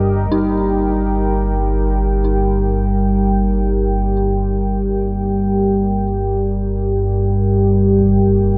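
Dark ambient drone in free time with a cavernous mood, where a deep, moody pad of sustained chords and an evolving, detuned sawtooth analog drone sit up front with chorus, an eerie, inharmonic FM bell plays arpeggios on Eb4 in the background from 0.3 seconds through phaser and delay, a huge, bright impact barely registers at 8.0 seconds, and a cathedral reverb with a 6.6-second tail bathes this short excerpt of a longer piece.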